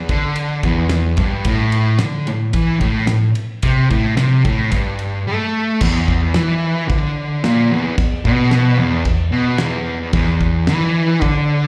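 Raw and rowdy, this garage rock fragment at 110 BPM in a straight 4/4 sets a dark, double-tracked fuzz guitar riff up front, with a cloth-damped, thuddy acoustic kit of fat snare, tight kick and dark crash and ride cymbals sounding gritty and rolled-off behind it, all heard live through a club PA with light small-room reverb as the music moves into a new section at 5.8 seconds.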